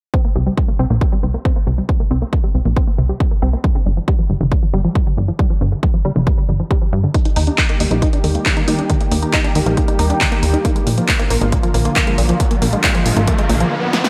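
A punchy, wave-folded analog bass plucks up front beside a heavy, layered electronic kick, both anchoring this emotional, soaring uplifting trance excerpt at 137 BPM in C minor. A tight, driving, detuned sequenced synth arpeggio with chorus, tape echo and sidechain pumping sits mellow behind them, while filter sweeps move across both bass and arpeggio over a C5, G5, Eb and Bb progression. At 7.1 seconds an overdriven analog drum machine adds handclaps, hi-hat and a punchy snare in a short room, and an electronic riser enters at 12.1 seconds before a drum fill at 13.9 seconds, all set in light digital ambience.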